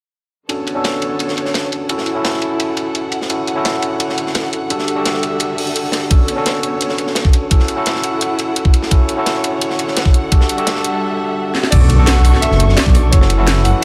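Gritty, overdriven tine electric piano sits up front under a filter sweep, joined by smooth bowed strings pumping with the sidechain, two drum kits (one dark and crunchy, one with cracking snare and bright hats) and a knocking kick from 6.1 s, in this soulful, rolling liquid drum and bass excerpt at 171 BPM in B minor, where after a brief break and drum fill the drop at 11.7 s brings a deep, rumbling detuned saw bass, a faint impact and a natural grand piano melody with digital delay over chords moving from Bm9 through F#m7, Dmaj7 and Em11.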